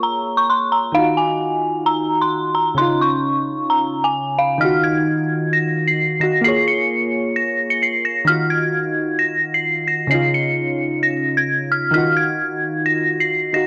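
A dark, detuned synth bell leads this brooding, menacing half-time hip hop cut at 131 BPM in Eb dorian, carrying an eerie, inharmonic FM melody over glassy, wave-folded digital keys with a filter sweep, both up front with chorus and low-pass filtering, as the chords move through Bbm7, Ebmadd9 and Dbadd9 in a dry, gritty hardware sound colored by transformer saturation and cassette tape.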